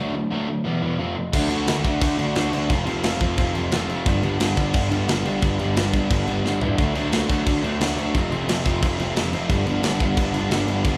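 A brief, rowdy punk rock excerpt opens with two overdriven electric guitars pounding out a riff, one bright and up front from a cranked stack, the other crunchier and warm, over chords moving from D through Em and F. At 1.3 seconds a growly, fuzz-drenched bass enters behind them while a tight metal drum kit with a medium-tuned snare, crash cymbal and toms drives the band forward, marked by a quick drum fill at 6.4 seconds. The band sounds like it is playing live in one large studio room, giving the rebellious cycle of D, F and G a moderate reverb tail.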